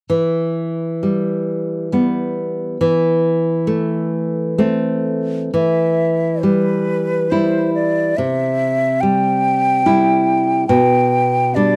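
A dry, close 1970s-style studio sound with moderate reverb frames this melancholic, elegiac romantic duo in E minor, moving in a rubato 3/4 at around 60-73 BPM. A bright, fingerpicked nylon-string guitar opens alone at 0.1 seconds, setting up the accompaniment over chords that move from Em to Am/E. At 5.5 seconds an airy concert flute with vibrato, tongued notes and lifted highs enters up front with the melody, as the harmony passes through C and G/B in this cut from a longer piece.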